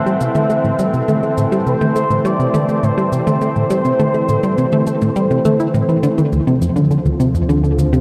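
Drenched in a huge, wet reverb and carried on worn, warbly cassette tape with drifting pitch, this cut from a longer piece of ambient, sequencer-driven space music moves at 103 BPM in A minor with an expansive, cosmic mood. A punchy, funky analog bass riff with a filter pluck sits up front beside a bright, airy resonant pad holding sustained chords, while electronic shaker and toms, re-recorded in a small room, echo off tape. A smooth, dark synth lead with vibrato sings the melody until 5.7 seconds, the harmony shifts from Am to Dm7 at 6.3 seconds, and an evolving, vintage analog drone enters on D at 7.0 seconds.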